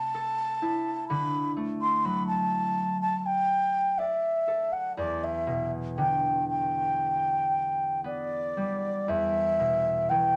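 Played rubato at a slow 56-64 BPM in 4/4, this Celtic folk slow air in E minor carries a haunting, longing mood. A baroque flute sings the melody up front, its wooden, airy tone softly attacked, unsteady and shaded with vibrato. Beneath it, a fingerpicked concert harp rings with a mellow acoustic sound over chords moving from Am/C to D and Em7, settling on Em at 9.1 seconds, all in a moderate studio ambience.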